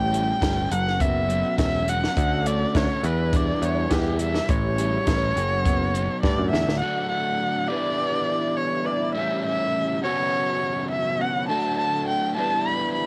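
A dark, intimate erhu leads this wistful, jangly indie rock piece, its single bowed line close and up front with vibrato, a soft attack, portamento slides and an airy bow. Beneath it, a warm overdriven guitar riff sits alongside a lo-fi, slightly broken-up guitar tucked in the background with ensemble chorus and tape echo. A growly picked bass and a dry cocktail kit with a high-tuned snare and punchy kick carry the first half, ending with a drum fill at 6.2 seconds before both stop at 6.8 seconds, all wrapped in light reverb and the feel of a home cassette recording.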